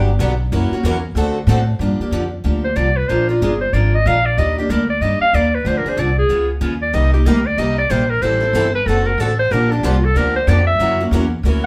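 Acoustic string swing in the jazz manouche tradition, this bittersweet, virtuosic passage in G minor moves at a brisk 187 BPM with a swung feel, a clear, forceful clarinet taking an up-front jazz solo from 1.8 s with light vibrato and a punchy, vintage tone. Beneath it, a woody pizzicato upright bass sits prominently, while two bright, boxy picked steel-string guitars with a parlour character supply accompaniment, finger squeaks audible, the second guitar dropping out at 1.6 s and returning at 6.9 s. The band plays live together in one room, bathed in a wet studio reverb, and the harmony wanders through chords such as Gm7, Ebmaj7, C#9 and Cm9 in this short cut from a longer piece.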